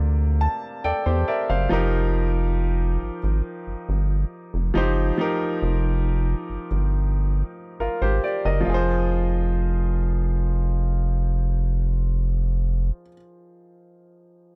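A straight 4/4 pulse at 69 BPM carries this moody, longing contemporary R&B fragment in F dorian, cut from a longer piece. A clear, intimate baby grand piano, with its action noise audible, opens with a fill over C9sus4 before moving to F9sus4 and then Fm at 8.7 seconds. Beneath it, an up-front, rubbery square-wave bass with a hollow, bouncy filter pluck sits low until 12.9 seconds, all in a dry, dark production.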